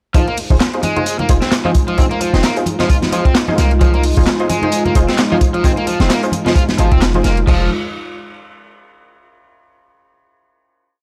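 Raw and energetic, this short breakbeat piece at 131 BPM in F minor pentatonic drives a gritty, saturated looped break with a tight kick and high-tuned snare, backed by a faint overdriven house layer of claps and closed hats and ringing congas, while a boomy, deep 808-style bass with tube saturation enters at 0.5 s under a crunchy overdriven guitar riff, bold detuned orchestra-hit-like stabs with tape echo, and a moody, pumping analog pad with chorus, all hitting a band accent at 7.0 s before a final chord rings out from 7.5 s.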